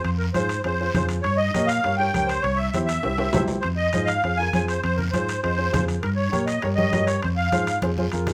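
A reedy, shimmering musette accordion carries the melody up front from the very start of this fiery, danceable cumbia, over an amped electric bass, a raspy, close guiro and ringing metal-shell timbales that sit in the background. At 0.3 seconds, bright, hard-handed congas and an intimate, woody upright piano with audible action noise join to fill out the accompaniment. Drum fills at 3.0 and 7.8 seconds punctuate the groove, and a moderate large-studio reverb lends the ensemble some space.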